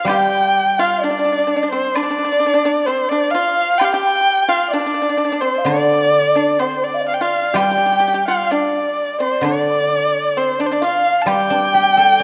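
Set in 2/4 at around 64 BPM, this excerpt of Chinese traditional chamber music moves with a rubato feel, graceful and festive in mood. A bowed erhu carries the melody up front, its close, smooth tone rich with vibrato and portamento, and a single player keeps the line even. Beneath it, a bamboo xiao adds a second line that sounds breathy, mellow and distant, very quiet with soft attacks and an unsteady tone colored by vibrato. The pipa, played with fingerpicks, gives a second line a dry, percussive edge, while the guzheng, also fingerpicked, provides ringing, silvery accompaniment across its span. A woodblock sits in the background from 0.1 to 11.5 seconds. The whole ensemble blooms in the wet reverb of a recital hall with a 1.7-second decay.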